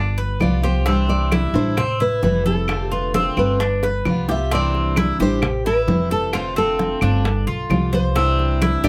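A straight 4/4 pulse at 132 BPM drives this short, warm and danceable cut of Cuban son and guajira in C major, cycling through G7, Cadd9, Am7 and F6. An up-front pizzicato upright bass anchors the low end with a woody, thumpy tone. A fingerpicked nylon-string guitar carries the melody from the start, its classical voice touched by finger squeak and a plate reverb. Alongside it, the Cuban tres plays metallic arpeggios on its doubled strings, and a picked steel-string acoustic guitar joins at 0.4 seconds with auditorium-sized accompaniment. In the background, bright, hard-hand congas enter at 0.2 seconds, with tight, high-tuned, saturated bongos and woody claves arriving at 0.4 seconds. A drum fill at 3.8 seconds carries the music into its second section, and light reverb gives the whole mix a gentle room sound.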